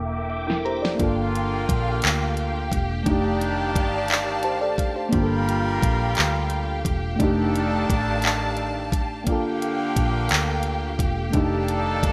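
A slow six-eight R&B groove moves at 58 BPM in dotted quarters with a straight feel, carried by a produced electronic drum kit with a knocking kick, fat snare, warm hats and handclaps, sitting up front in a small-room sound. The drums and a mellow FM electric piano open with a short fill before the full arrangement arrives at 1.0 seconds, when a clear, loosely played pop-style horn section begins adding stabs with light vibrato. The electric piano is soft, round and full-bodied with a fast attack, a decaying tone and a noise layer, shimmering through chorus and phaser, and it slips in another fill at 4.1 seconds. Beneath it, a vintage muted fingered bass sounds dark, amped and punchy, while a lush symphonic string section holds sustained bowed chords with a focused, smooth top and vibrato. In G minor, the harmony rocks between Gm7 and F13, and the light reverb, digital ambience and filtered, bright 1980s-style production give this fragment of a longer piece a sultry, late-night mood.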